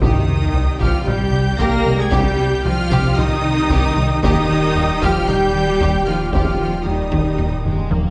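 A straight 4/4 pulse at 114 BPM drives this brooding, vast cinematic cue, a hybrid orchestral and electronic film score in C minor that moves from Cm to Eb at 4.2 seconds. A distant taiko ensemble struck with heavy sticks sits in the background, while a sub drop adds an electronic impact at the opening that lasts until 2.1 seconds, and a drum fill closes the passage at 7.7 seconds. The violin section carries the high melody with focused, lush vibrato, supported by a second violin line, an intense viola accompaniment and a distant, even cello section, with a woody, very quiet double bass section beneath. A French horn section holds roomy sustained chords in the background, and a very quiet, squelchy blip pluck with phaser spins bright filtered arpeggios. Underneath, a round, dark analog bass plays a deep riff, and a thick, menacing detuned saw bass with saturation and beating tones anchors the low end. 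The sound sits in a moderate scoring stage reverb with a softened top, and the passage is cut from a longer piece.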